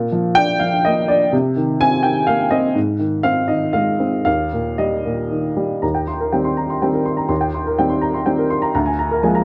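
Neoclassical minimalist piano in Eb major, this peaceful, intimate fragment of a longer piece moves in a rubato 3/4 at around 114-127 BPM. A solo upright piano with a woody, slightly detuned, natural tone sits up front, spanning D2 to C6 as it passes through Bb, Cm7, Ab and Eb before shifting at 5.8 s to Eb6 and closing on Bb7/D. Moderate studio reverb and a dark, warm production give the sound a close, softly enveloping room.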